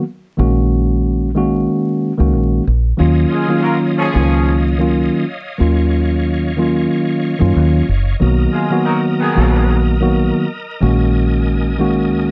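The deep dub fingered electric bass is round and punchy in the foreground from 0.4 seconds, its foam-muted, amped tone giving this moody, tough hip hop excerpt its weight. It sits under a mellow tine electric piano that opens the clip alone, clean and up front, shaped by high-pass and low-pass filters. At 3.0 seconds a bright tonewheel organ enters much lower in the mix with reedy sustained chords, key click, chorus vibrato and a fast rotary speaker. A mellow horn section with soft attack and light vibrato adds vintage jazz-style stabs with slapback echo around 3.3 and 8.5 seconds. At 92 BPM in 4/4 with a gentle swing on the sixteenths, the harmony moves through Gb69/Bb, Ebm9 and Bmaj7 in Eb minor. Light reverb and vinyl crackle give the production a dark, warm character.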